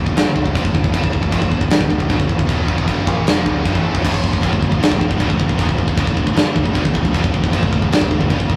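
A straight 4/4 at 155 BPM drives this aggressive, relentless heavy metal clip in D Phrygian over a Dm chord, with a big-room acoustic drum kit up front delivering a punchy kick, a medium-tuned snare, china and crash cymbals. A very quiet double-tracked high-gain guitar and a bright, scooped, distorted guitar grind out the riff, the latter sitting in the background beside a growling, overdriven picked bass. A third very quiet guitar riff joins at 4.0 seconds, and light reverb with a rough rehearsal-room sound gives the whole a raw edge.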